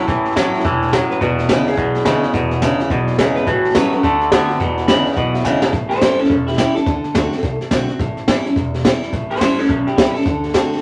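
A wet studio reverb gives this upbeat, retro rockabilly excerpt a lively sheen over a swung 4/4 feel, with the chords moving among A7, D7 and E7. A slightly broken-up electric guitar through a small old amp carries the melody with a phaser, while a clean, scooped, twangy electric guitar sits up front with a riff that stops at 5.7 s, and a bright, full-bodied dreadnought acoustic guitar picks the accompaniment. Underneath, a woody, thumpy pizzicato upright bass on gut strings pairs with a dark, smooth brushed drum kit up front, with its high-tuned snare and boomy kick, which plays a fill at 5.5 s.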